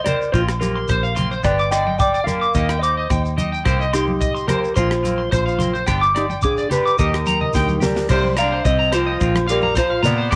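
A straight, steady four-beat groove drives this bittersweet highlife guitar band excerpt, built on a dry, polished funk kit with a tight kick, a medium-tuned snare, hi-hat, rim clicks and crash cymbal, underpinned by a round, foam-muted fingered bass. Soft-handed congas with a thick-skinned tone, a grainy shekere and distant, ringing agogo bells fill out the percussion from the first moments. Up front, a dark, clean electric guitar carries the fingered melody through a lush chorus, while a twangy, slightly broken-up guitar picks high arpeggios coloured by chorus and slapback echo. Beneath them, a bright, scooped semi-hollow guitar supplies picked accompaniment over a cycling progression of Bbsus2, G, Eb and Cm7. A drum fill at 7.5 seconds leads into a new section at 8.1 seconds, just after a warm tenor saxophone with light vibrato slips in at 7.6 seconds, adding a jazz-style second line from the background under a gentle reverb.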